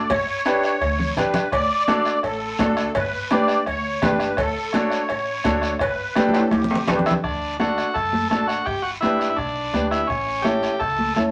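Joyful and sunny, this short cumbia clip moves at 168 BPM in D major, with a woody, thumpy upright bass, a soft-beater bombo, thick-skinned high-tuned congas, a raspy guiro and ringing cowbell and timbales driving the groove while a clear upright piano with audible action noise plays accompaniment up front. A reedy, shimmering musette accordion carries a second line until about 7.0 seconds, when the cowbell and timbales also stop during a drum fill, and a buzzy vintage combo organ takes the melody from 7.1 seconds. The chords move between G and D before closing on A7, all set in a wet studio reverb.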